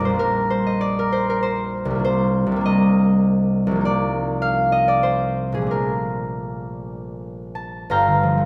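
Peaceful and serene, this short cut from a longer classical work features a solo concert harp in Bb major, moving in an unhurried 3/4 with a rubato feel somewhere between 76 and 105 BPM. The harp is acoustic and fingerpicked, with a ringing, warm tone that spans from a deep G1 up to Bb5. Its harmony drifts gently from Bb6 through Cm9 and Cm11 to Bbmaj7, reaching Gm9 at 7.9 seconds. A generous scoring-stage reverb, with a 1.6-second decay, lets the notes bloom. The listener seems to hear it from further back in the room, and the fragment ends at 8.5 seconds.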